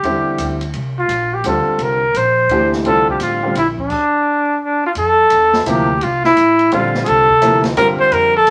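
Vinyl crackle and a short studio reverb frame this intense, cool modal jazz fragment in a swung 3/4 at 171 BPM, where an up-front trumpet carries the melody with vibrato, scooped notes and a smooth top over sus-chord harmony, while a clear baby grand piano comps, dropping out at 3.5 seconds and returning at 5.7, a woody pizzicato upright bass holds the low end, and a natural-sounding acoustic drum kit with dark cymbals and a boomy kick keeps time.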